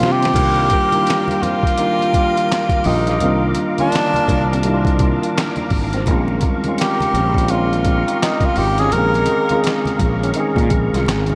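A breathy, whispered tenor saxophone sits up front with light vibrato and tape echo, carrying a sultry melody that ends at 9.6 seconds in this smooth neo-soul R&B excerpt at 84 BPM with a swung 16th feel. From the very start, alongside a brief drum fill, a worn, slightly out-of-tune tine electric piano, a growly fretless bass and a gritty, pitched-down boom bap drum kit with thumpy kick, handclaps and crash play together, settling over Cm11 and shifting to Bbm11 at 6.1 seconds. A twangy, slightly broken-up electric guitar, a clear tonewheel organ with key click, chorus vibrato and slow rotary speaker, and very quiet low-tuned congas fill out a dreamy mix soaked in huge ambient reverb.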